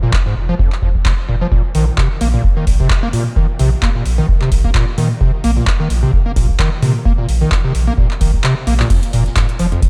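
A light reverb and small-room ambience surround this gritty, trippy slice of acid house, cut from a longer piece and moving at 130 BPM in 4/4 with a 55% swing on the sixteenths. Up front, an overdriven acid bass riff with a squelchy, resonant square-wave tone and fast, decaying notes runs through a filter sweep, distortion, tube saturation, analog chorus, sidechain pumping and a diffuse ambient delay. Beneath it, a thick triangle-wave sub bass holds sustained low notes, also tube-saturated and pumping against the beat. A deep, tape-colored electronic kick sits prominently in the mix, while a booming analog drum machine adds a crash cymbal, handclaps and metallic hi-hats. The kick drops out at 8.4 seconds for a drum fill, and at 8.9 seconds a very quiet, swinging big-band kit with a natural big-room sound and a medium-tuned snare slips in with hi-hat and snare.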